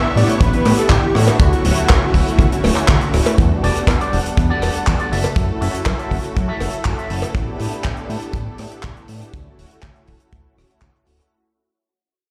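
A straight 4/4 groove at 121 BPM drives this groovy, cosmic nu-disco piece, built on an up-front acoustic kick, a tight small-room funk kit with handclaps, hi-hat and rim click, a dry cowbell tucked in the background, and a fat, saturated analog bass that carries a filter sweep as the music fades out. Over chords moving through A9sus4, Dmaj7, Em9 and F#m7, a smooth, evolving pad with ensemble chorus and dub echo and a lush, bowed string section both pump against the kick, while a punchy background pluck adds arpeggios and a bold, nasal, warbling unison lead carries the melody until 2.9 s. From 3.6 s to 7.3 s a bright, twangy guitar through an envelope filter plays a clean picked riff with chorus and dub echo, all set in stone-room reverb, like a big sound system playing in a bare room.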